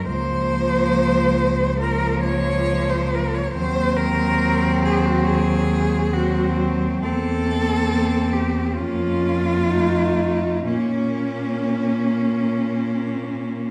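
Heard from further back in a reverberant recital hall, this classical piece for four bowed cellos moves at a slow 68 BPM in Bb minor, its uneven, rubato pulse carrying a solemn, yearning mood. The up-front melody cello sings with soft attacks, vibrato and expressive portamento over an intense second line with a smooth top, a background accompaniment that also slides expressively between notes, and a rich, even bass cello placed close and up front. The harmony passes from Bbm/Db through Cm7b5/Eb, C7/E and Bbm/F to F7, settling on Bbm at 10.7 seconds.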